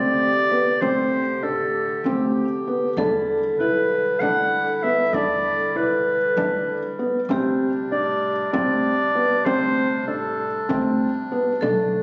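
Urgent yet pensive, this contemporary chamber piece, cut from a longer work, moves in 7/8 at 194 BPM counted in eighths, shifting from D7sus4 to Em7 and back. A clear, distant clarinet carries the melody up front, while a metallic, ringing vibraphone with medium hard mallets, medium motor vibrato and a vintage, band-limited tone adds a second line. Beneath them sit sustained chords from a classical-style woodwind section, soft arpeggios from a felt-muted upright piano with audible action noise, woody pizzicato upright bass, and a deep, very quiet frame drum that enters at 0.8 seconds, all captured on a phone in the room with recital hall reverb, club reverb and compression.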